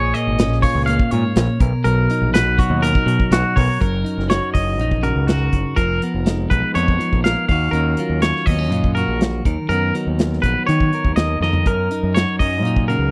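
A dry, close recording in a 1970s studio style frames this bright, intricate math rock and midwest emo passage in F# major at 122 BPM, cut from a longer piece. A picked, compressed clean electric guitar plays accompaniment while an up-front, twangy electric guitar spins fingered arpeggios through spring reverb, over a growling, overdriven fingered bass and a smooth, dark acoustic kit with a tight kick and medium-tuned snare. The harmony moves from A#m7 and Bmaj7 into F#6, C#13/E# and a lingering D#m9, and a drum fill at 11.4 s leads back to F#6.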